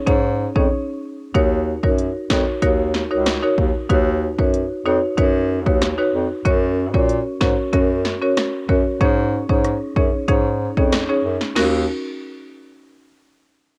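A woody marimba played with medium mallets on padauk bars carries the harmony up front, its dark, smooth tone giving this sultry, tough dancehall excerpt its color. Beneath it, a bass clarinet in classical style supplies the low line with a warm, roomy sound that seems distant even while it sits up front. A layered electronic deep house drum kit, re-recorded in a small room with a cassette tape character, drives the straight 4/4 groove with a punchy kick and snare, smooth hi-hats, rim clicks and crash cymbal. After a brief break at 0.7 seconds, the main passage opens at 1.3 seconds on Ebm7 and moves through Badd9/D#, Gb and Absus4 before returning to Ebm7 at 11.6 seconds. The home cassette recording is dry, with little reverb.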